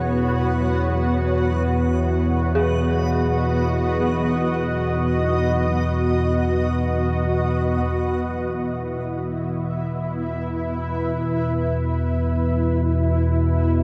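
Unsettling and ominous, this dark ambient drone drifts in free time, an excerpt from a longer piece steeped in a huge, wet reverb with a dark production. An analog drone of sawtooth and pulse waves sits up front with a warm, resonant, evolving tone under chorus, while a cloudy, blurred granular pad holds sustained chords from B3 to E5 and a detuned synth bell scatters eerie, inharmonic arpeggios in the background through chorus, tremolo and tape echo. A reversed, dreamy swelling texture hovers on B4 until 7.8 s, when the harmony moves from B to E5.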